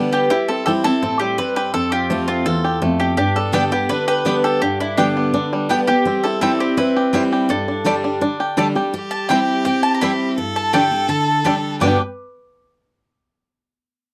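A straight 4/4 drive at 167 BPM powers this joyful, rustic bluegrass passage in G mixolydian, cut from a longer piece, with a bright, full-bodied picked dreadnought guitar and a twangy, percussive fingerpicked banjo rolling arpeggios up front from the start. A round, double-strung mandolin carries the melody almost at once, while a second, woody mandolin adds stabs from 3.5 seconds. A clear, focused fiddle with light vibrato slips in a quieter second line at 8.9 seconds, all set in a dry, close 1970s-style studio sound with light reverb.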